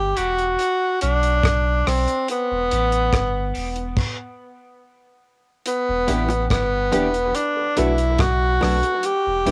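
A home cassette recording with a touch of light reverb gives this spacious, meditative slice of dub reggae a soft, intimate glow, and it is cut from a longer piece. A breathy tenor saxophone carries the melody up front: clear and whispered, with gentle vibrato, a soft attack, a pop-style solo voice, and dub echo trailing its phrases. Beneath it sits a deep, round sub bass with a sine-like tone, sustained and mellow, while a damped 70s drum kit sounds dry and tight, with kick, hi-hat, rim click and crash colored by cassette tape. Tucked in the background, a dark, clean semi-hollow electric guitar adds picked accompaniment through subtle chorus, a high-pass filter and dub echo, over chords moving between Em7 and Bm7. The opening break drops into a stop at 4.0 s, and from 6.1 s a woody, boxy upright piano adds short stabs with echo, joined by very quiet, low-tuned bongos.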